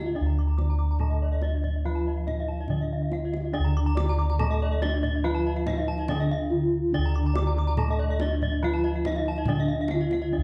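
A straight 4/4 pulse at 142 BPM drives this shimmering, hypnotic Balinese gamelan passage in D pelog, cut from a longer piece. Close, full bossed gongs struck with padded beaters carry the round, beating bass up front, while a bronze metallophone plays the melody and a lower one plays accompaniment beneath it. Two bright, horn-mallet metallophones spin high arpeggios with the airy, shimmering beats of paired tuning, and a tight kendang sits distant in the background, all within a moderate recital hall reverb and a dark production.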